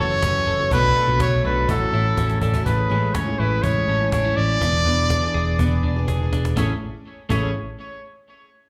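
A snappy, dry cajon sets a straight 4/4 pulse at 123 BPM, entering at 0.2 seconds and adding fills just before each change of section, while a dark, round, foam-muted electric bass pins down the low end with punchy picked notes. This breezy, youthful slice of jangly indie pop in A major, cut from a longer piece, moves from F#m7 and Bm7 through A6 to Amaj7 and E7 before settling back on Amaj7. Up front, a clear, smooth-topped solo trumpet carries the melody in a pop style with vibrato, its lines thickened by slapback echo and delay. A bright, clean, compressed twelve-string electric guitar spins arpeggios with slapback echo, and further back a picked acoustic archtop guitar adds warm accompaniment, complete with finger squeak and its own slapback echo. A woody upright piano sits very quietly beneath it all, and the whole performance comes across as a live gig heard through the venue's PA, wrapped in a moderate club reverb.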